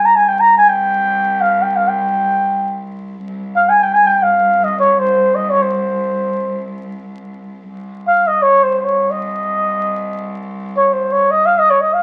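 A mellow flugelhorn and a low cello drone on C sound together from the very start, setting a melancholic, hypnotic mood in free time within a Turkish makam ensemble idiom, in C makam kurdi. The flugelhorn carries the melody up front as a jazz-style solo, moving between C5 and Bb5 across the full 12 seconds. Beneath it, a single bowed cello holds its C2 drone far lower in the mix, its tone warm and intimate with light vibrato, a soft attack and an airy sul tasto bow, heard close. The melody unfolds over two statements of the same section, the second beginning at 7.7 seconds. Wet studio reverb surrounds the pair, while the sound of a very old 78 rpm record, complete with vinyl crackle, gives this fragment of a longer piece a faded, antique cast.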